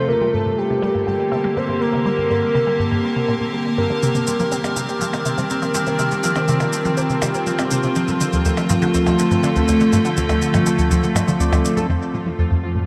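Ambient, sequencer-driven space music in G minor at 122 BPM, mysterious and expansive, where a soft, round octave-layered synth lead with chorus, phaser and tape echo sings briefly over an evolving, morphing wavetable pad and a pulsing gated texture that fades in, a squelchy, resonant blip pluck riff runs throughout, a mellow, fingerpicked concert harp and electronic shaker and percussion blips enter at 4.0 seconds, and an analog drone bass appears only at 12.6 seconds, all bathed in a huge, wet reverb as this cut from a longer piece moves through Gm, Cm7, Dm and F.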